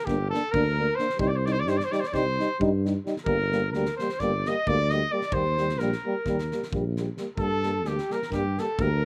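Moving in a straight 9/8 at 262 BPM counted in eighths, this bittersweet, virtuosic Balkan brass band excerpt in G minor puts a clear, up-front trumpet on the melody, joined by a very quiet, distant flugelhorn with light vibrato on the second line, while two mellow euphoniums (one sitting in the background, the other roomy with a slight vibrato) fill in the accompaniment over a dark, smooth-topped tuba bass and a loose acoustic drum kit with a punchy kick and fat snare in a pumping room, all cycling through Gm, Cm and Eb across its 9.1 seconds with little reverb.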